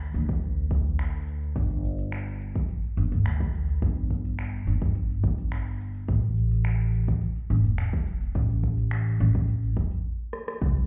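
Heard muffled as if through a wall with a club's reverb, this warm, meditative organic downtempo fragment at 106 BPM in 4/4 rests on an up-front, woody pizzicato upright bass with steel strings and sidechain pumping, a deep electronic kick entering at 0.3 seconds, and a quieter afro-pop kit of finger snaps, crisp hi-hat, rim click and shaker, before a stop at 10.0 seconds broken by a drum fill at 10.3 seconds.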